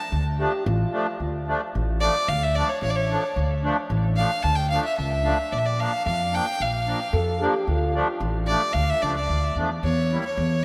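Over a straight two-beat pulse, this festive yet soulful klezmer piece, cut from a longer work, opens with the violin stepping forward in the first 1.2 seconds. The bowed violin carries the melody up front, its tone biting and earthy with a smooth top and light vibrato, trailed by a diffuse ambient delay. Close behind, the pizzicato upright bass sits equally forward, woody and acoustic with the ring of steel strings. The accordion fills in the accompaniment with a reedy, vintage, band-limited sound and slow beating between its reeds. A trombone with a bucket mute adds a veiled, growling second line in two short appearances, the later one around 7.1 seconds, with scooped notes, raspy grit and its own diffuse delay. The harmony moves from D minor to B-flat and back before landing on an E diminished chord, all set in a dreamy mix soaked in a moderate church reverb.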